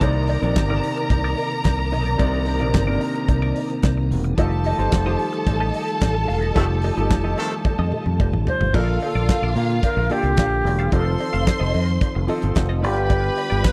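Disco with a driving, glamorous mood, in a steady straight four, cut from a longer piece and captured as a dry, close 1970s-style studio recording with a small room around it. A damped 70s drum kit sits up front with a fat snare, tight kick, dark cymbals, hi-hat, toms, crash and handclaps, joined by a punchy fingered electric bass and a faint vintage cowbell. Behind them, a clean, picked electric guitar run through wah and phaser, a grand piano, and a round tonewheel organ with key click, chorus vibrato and fast rotary speaker fill out the harmony over Cm9 and F9 chords. A dark, lush string section with expressive vibrato carries a second line throughout. A loose horn section in octaves punches in with stabs from 6.6 to 7.6 seconds during a band accent, and a drum fill leads into a new section at 8.7 seconds, where the harmony moves through Bbmaj7, F7 and G7. From 8.5 seconds a bright, reedy alto flute with a crisp attack takes the melody up front.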